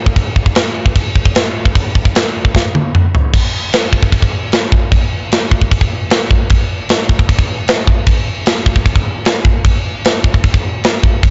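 Metal in a dark, relentless mood, this short cut from a longer piece drives forward at 152 BPM in a straight 4/4. The only part is a tight acoustic drum kit, entering at 0.1 seconds and sitting up front with a mid-forward character, a medium-tuned snare, a tight kick, toms and bright crash cymbals. A drum fill from 2.5 to 3.3 seconds marks the move from the opening section into the next, which carries on to 11.3 seconds. The kit has a big-room character, yet the mix carries little reverb, keeping the hits dry and close. The production is dark and warm, with nothing above 7.8 kHz.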